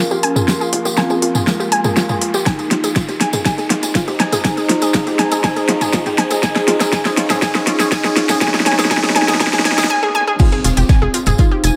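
A straight 4/4 pulse at 121 BPM drives this melancholic, cinematic melodic techno clip: a tape-warm deep house kit with a fat snare and metallic hats, a jingly tambourine and a tight sawtooth sequencer bass are joined at 2.5 s by a deep, up-front electronic kick. Meanwhile a bright, detuned analog pluck arpeggiates, a smooth, expressive synth lead with vibrato and dub echo sings over a moody ambient pad and a warbling, nostalgic tape-like pad, all pumping under sidechain. Filter sweeps and an electronic riser build toward a drop at 10.4 s, where an impact lands, the harmony settles on F minor, and a gritty, overdriven sampler-style kit slips in very quietly, all bathed in a wet spring reverb and echo-heavy sheen.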